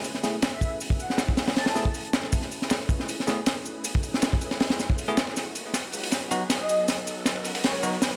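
Nostalgic and raw, this drum and bass and jungle excerpt runs at 158 BPM in F# dorian, building up throughout as a crunchy, saturated breakbeat kit with a punchy kick and high-tuned snare sits up front over a dusty, tape-warm sampler-style kit in the background, with a drum fill from 5.4 seconds. Silky vintage string-machine chords with ensemble chorus and a very quiet, rumbling detuned saw bass support bell-like electric piano stabs under a low-pass filter sweep and dub echo, moving from F#m11 to B/F#. A breathy, flute-like lead with vibrato and dub echo floats above in two brief phrases, while a faint electronic riser enters at 3.1 seconds, all set in light small-room ambience.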